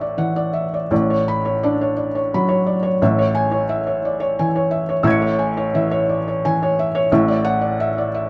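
In a rubato 6/8 at 58 BPM, this hopeful, peaceful fragment of neoclassical minimalist piano finds a felt-muted upright playing solo in A major, its soft, intimate tone placed up front in light reverb and spanning A1 to C#7 as the harmony drifts from Dadd9/A through Bmadd9/A to a long Amaj7 before returning to Dadd9/A at 7.1 seconds.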